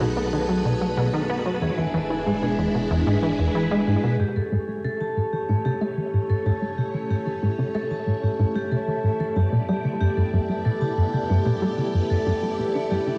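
Cosmic and expansive, this short cut from a longer piece of sequencer-driven ambient space music moves at 93 BPM in a straight 4/4, passing through B and E7 before settling into A mixolydian at 4.2 seconds over A and G6 chords. A punchy, funky analog bass riff with a fast filter pluck sits up front beside bright, metallic vibraphone arpeggios ringing with fast motor vibrato and delay. Lush vintage string-machine chords with phaser and ensemble chorus fade in from 4.2 seconds as a filter sweep moves across the synth bass, while a deep, round sub bass holds the background only until then, all bathed in a lush hall reverb on a home cassette recording.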